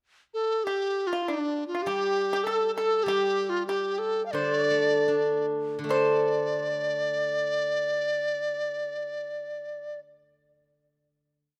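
In a free, rubato 2/4 that drifts between 67 and 100 BPM, this complete, wistful and tender Chinese traditional chamber piece in D yu mode, tuned to A4 = 441 Hz, opens with a short pickup. The large dizi leads from 0.3 seconds with a reedy, buzzing-membrane bamboo tone: a pure, up-front modal melody with crisp chiff on its attacks, vibrato and ornaments. The pipa, played with fingerpicks, follows almost at once with a dry, percussive second voice that carries the same line with its own ornaments. From 1.9 seconds the steel-string zither, also fingerpicked and up front, adds a ringing, silvery accompaniment on its low strings. The phrase slows from 3.1 seconds before the ensemble settles onto a final chord. Close, detailed microphones and light reverb leave the acoustic instruments intimate and warm.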